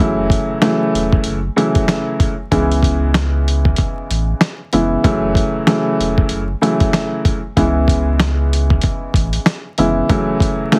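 A filtered grand piano sits up front in this moody, gritty boom-bap hip-hop excerpt, its smooth, vintage tone and short sustain carrying the harmony between F#m7 and C#m7 in F# minor. At 95 BPM in 4/4 with a 60% swing on the sixteenths, a dusty soul sampler-style kit enters at 0.3 seconds, its thumpy kick, medium-tuned snare and hi-hat sounding compressed and gritty at the front of the mix. Beneath them a round, sine-like sub bass holds sustained, mellow notes with a fast attack, stopping at 10.0 seconds while piano and drums carry on to the end. The overall sound is dry and heavily squeezed, like an old radio broadcast, with a layer of vinyl crackle adding grit. The piece is cut from a longer track.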